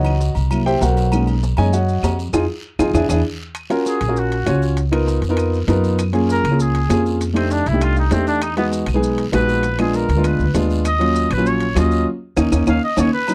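This driving, sultry stretch of Afro-Cuban jazz opens with a dark, mellow concert grand piano featured up front, its deep bass register paired with a woody, pizzicato upright bass strung with steel. In the background sit ringing metal-shell agogo bells and timbales, with claves, grainy maracas and a raspy guiro. The band hits an accent at 2.3 seconds, followed by a drum fill from 2.6 seconds. At 3.9 seconds a soft-attack trumpet enters for a jazz-style solo, warm yet distant and roomy despite its forward placement. It carries the line over rich extended chords until another band accent arrives near 12.1 seconds and a fill near 12.7 seconds. The passage is cut from a longer piece, with the close, nearly reverb-free sound of a 1970s studio session.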